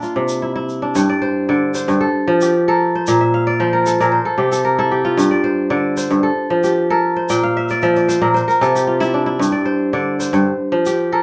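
Reflective and flowing, this clip from a longer piece of West African traditional string and xylophone music centres on an up-front, fingerpicked kora playing ringing arpeggios across a broad range, with crisp fills at 3.2 and 7.3 seconds over a repeating cycle of C, G, F and B-flat chords. A grainy, compressed tube shaker sits much lower in the mix, its saturated, bright texture running beneath the kora for nearly the whole passage. A modest small-room reverb gives the acoustic performance a close, natural space.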